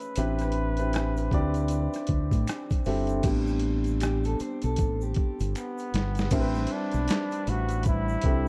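A gritty, overdriven boom bap sampler-style drum kit with a thumpy kick and high-tuned snare drives this smooth, late-night neo-soul and R&B excerpt at 78 BPM with swung 16ths, under a round, punchy fingered electric bass on Am11, a woody upright piano that takes a solo at 3.2 seconds, a breathy, whispered flugelhorn melody with vibrato and scooped notes, a background egg shaker and finger snaps, a slightly broken-up, lo-fi electric guitar through a small old amp with analog delay from 4.0 seconds, and a hollow, detuned pad with chorus arriving at 6.3 seconds, in a dark production with light studio reverb.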